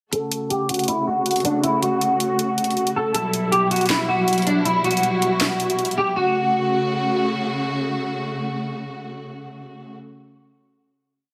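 Lightly reverberant, this short, dark, hard-hitting trap piece at 159 BPM in a half-time feel opens as a breakdown under a filter sweep, with an overdriven electronic kit of sharp snare layered with finger snaps and bright hi-hats in fast rolls. Up front, a slightly broken-up electric guitar, thickened by chorus, delay and a low-pass filter, repeats a looping melody like a sampled loop, while a lush, bowed string section with vibrato holds distant sustained chords moving from F#m to G6. The drums stop at 6.0 seconds, and the guitar drops out at 7.3 seconds, leaving the strings to ring out a final F#m chord until 9.9 seconds.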